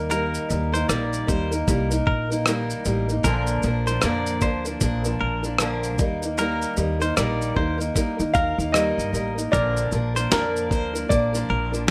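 A gritty, compressed sampler-style drum kit sits up front in this carefree, heartfelt acoustic pop excerpt at 76 BPM, its thumpy kick, rim click, shaker and snare giving a lightly swung 4/4 feel. A fingerpicked steel-string acoustic guitar with fresh strings and a growly, woody pizzicato upright bass carry the Eb and Bb harmony, while a bright, twangy clean electric guitar recorded direct adds arpeggios. A warm upright piano plays the melody at the start, drops out at 2.8 seconds and returns at 8.3 seconds, with plate reverb on the piano and both guitars.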